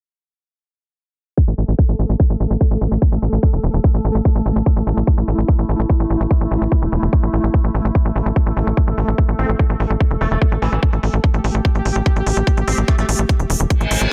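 An overdriven, up-front electronic kick opens this alien psychedelic trance excerpt at 1.4 s, joined at once by a punchy, nasal sequencer bass with a filter pluck and fast attack and smooth, layered hi-hats carrying a small-room sheen. A pulsing, tempo-synced triangle texture holds sustained chords with chorus, reverb and sidechain pumping as a filter sweep runs through the whole dense, heavily limited section. At 9.4 s a metallic, wobbling FM bass with distortion and delay surfaces in the background, and a reverse cymbal rises at 13.8 s.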